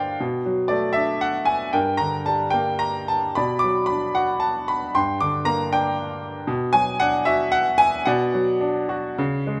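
In a flexible, rubato 3/4 that drifts between 103 and 120 BPM, this brief classical fragment for lyrical solo piano unfolds with a moody, cool air. A clear, worn grand piano sits up front, spanning G2 to D6 as it opens with a fill and moves through Bm7, Gm and Bm, alternating between the Gm and Bm chords through to 9.6 seconds. A moderate scoring-stage reverb gives the instrument a spacious halo.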